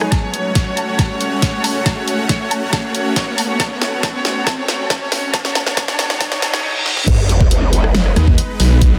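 A dense, heavily limited modern mix opens this menacing, aggressive heavy wobble dubstep excerpt in half-time, where a distant, floating violin section carries the melody through tape echo over a lush supersaw pad pumping with sidechain, a knocking electronic kick, a dubstep kit with a huge snare and bright hats, and a riser, reverse cymbal and sub drop building toward the drop at 7.1 s, when a wobbling, saturated growl bass bursts in before a snarling distorted saw bass takes over at 8.2 s.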